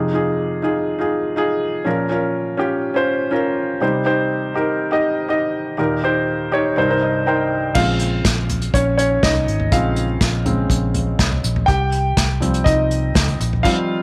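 A concert grand piano opens this bittersweet, earnest piano-driven pop piece at 122 BPM, its intimate, natural tone carrying deep bass, short sustain and audible action noise as it moves through Fm7, Bbm and Cm and plays a fill leading up to 7.8 seconds. At 7.8 seconds the piano takes a solo while a dark, round, foam-muted electric bass and an acoustic drum kit played with bundle sticks enter, the kit airy and polished with a punchy kick and a medium-tuned snare sitting up front. A moderate spring reverb and small room ambience frame the sound.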